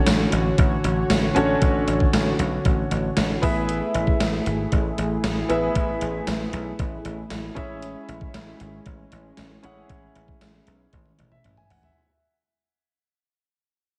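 Glossy and romantic, this 1980s-style pop excerpt moves at 116 BPM in a straight 4/4 and fades out across its length, with a clear, polished concert grand piano accompanying over a brassy, detuned sawtooth pad that carries chorus and vibrato through its slow-attack sustained chords. A bright, foam-muted thumbed slap bass sits up front beside a thumpy, sampler-style digital drum machine whose gated-reverb snare, hi-hat, tambourine and toms close with a fill from 10.9 to 12.0 seconds. The harmony moves from Dmaj7/A to E and then C#m, all bathed in a dreamy, lush hall reverb.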